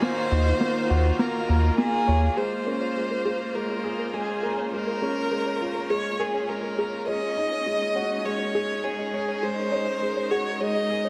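A hypnotic, moving piece of piano and strings electronica in Bb minor at 102 BPM opens with a rich, focused solo violin melody and a clear, slightly worn grand piano riff, both carrying digital delay, over bright, intense sustained chords from a bowed studio string section. A deep, round analog bass sits up front from 0.3 to 2.3 seconds under Ebm7, and at 2.4 seconds a gentle, very quiet pluck with chorus begins arpeggios as the harmony moves to Bbm7 and later to Ab7sus4. A lush hall reverb surrounds this excerpt from a longer piece.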